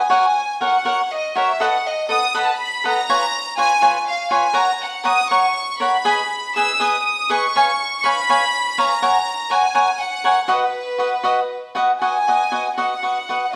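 A recording in a stone room with a wet reverb carries this proud, festive mariachi excerpt in a rubato 6/8, where a close, intimate violin section plays the melody with light vibrato and a sul tasto tone while a bright, crisp picked cavaquinho accompanies through chords moving from F# to B7, C#7 and G#m before shifting into a new section at 12.0 seconds.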